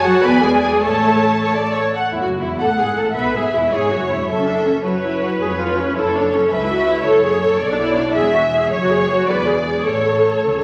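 In 6/8 at 99-110 BPM with a rubato feel, this cheerful, graceful classical-period movement for string orchestra in A major is a brief stretch cut from a longer piece. A focused violin section with a smooth top carries the melody from the background, while a clear, intense second violin line and an expressive viola accompaniment with portamento sit up front. A close, even cello section and a distant double bass section with light vibrato anchor the bass, all set in a recital hall reverb with a layer of vinyl crackle.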